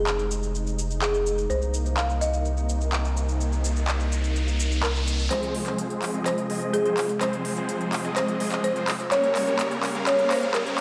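A straight 4/4 pulse of crisp, layered big-room drums with handclaps, hi-hat and shaker drives this anthemic festival progressive house piece, where a woody, rustic marimba with echoing delay carries the melody over a nasal, chorused pad and a thick, saturated sub bass that stops at 5.3 s, while a background riser enters at 2.7 s and, in the build-up from 5.3 s, huge, airy detuned supersaw chords take up a riff as filter sweeps move across the supersaws and pad, a drum fill runs, and a moderate hall reverb gives the sound a powerful, spacious scale.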